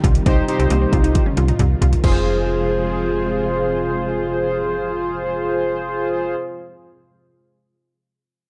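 A straight 4/4 synth-pop pulse at 135 BPM in F minor drives this cool, nocturnal fragment, where a deep house drum kit with a deep kick and metallic hats plays a fill from 1.1 s before stopping at 2.1 s, as a snappy slap-like FM bass, bold fat analog synth brass with chorus entering at 0.3 s, a lush detuned unison pluck arpeggio with analog delay in the background, and full-bodied string-machine cellos with ensemble chorus move from Cm to Fm under a moderate plate reverb in a dark production.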